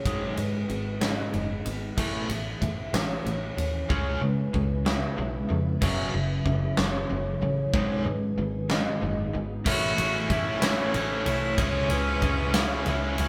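This euphoric, hopeful post-rock passage in 6/8 opens with a very quiet, ethereal pad holding sustained chords, a faint, twangy twelve-string electric guitar and a mellow, ringing vibraphone with soft mallets playing arpeggios, all over a crunchy overdriven guitar riff, a dark, round overdriven picked bass and a huge arena drum kit sitting up front with a punchy kick, fat snare and bright cymbals. At 2.0 seconds a second crunchy guitar joins in the background with tremolo, and the full band plays live in one room with a wet reverb as the music builds. At 9.7 seconds the twelve-string drops out and an intense, smooth-topped bowed cello takes up the melody with light vibrato.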